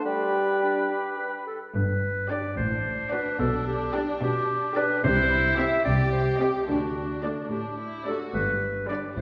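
Playful and quirky, this whimsical cinematic film cue in G major moves in a straight 6/8 at 73 BPM (dotted quarters). It opens with a brief woodwind gesture from a clear, vintage-toned oboe, an airy silver concert flute and a mellow, distant bassoon, while an up-front clarinet carries a second line through the whole passage. At 1.7 s a veiled, con sordino string body begins to enter, with cello and double bass sections on the bass. From 2.3 s violas add lush accompaniment and a very quiet studio violin section holds the melody, joined at 2.6 s by a soft chamber violin section on a second line. The harmony steps from G through D7/A, G/B, C and D back to G, all within the wet reverb of a church or concert hall.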